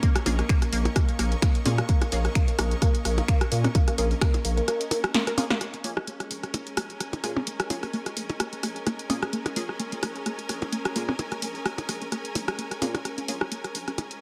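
A swung 4/4 groove sets this cool, sparse minimal techno piece in motion, with a layered, tape-warm electronic kick up front until 4.3 seconds. A punchy analog drum machine supplies finger snaps, hi-hat and a snare set in a large room, while electronic rim clicks and percussion blips trail tape echo, and a drum fill at 5.1 seconds leads into a new section at 5.6 seconds as the harmony shifts from a minor chord to its minor seventh. Underneath, a thick, saturated sine sub bass pumps against the sidechain. The riff comes from a juicy, squelchy sawtooth pluck with a moving notch, phaser, pumping and tape echo, joined in the background by a muted dub chord stab colored by phaser, analog chorus and echo. A lush, intense studio string section with vibrato adds a bright, pumping bed, and a very quiet bubbling texture of random filter steps shimmers beneath it all in a light reverb.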